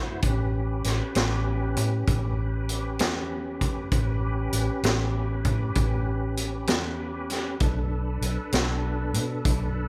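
A slow blues in 12/8 rolls along at 65 BPM in A mixolydian, a laid-back yet rollicking excerpt cut from a longer piece, with a band playing live in one room under light reverb. A vintage drum kit sits up front with a punchy kick, high-tuned snare and hi-hat, beside a dark, round, foam-muted fingered electric bass, while a reedy tonewheel organ holds sustained chords through a slow rotary speaker and chorus vibrato, its key click audible. The harmony rests on A9 before moving to Bm7 at 7.6 seconds.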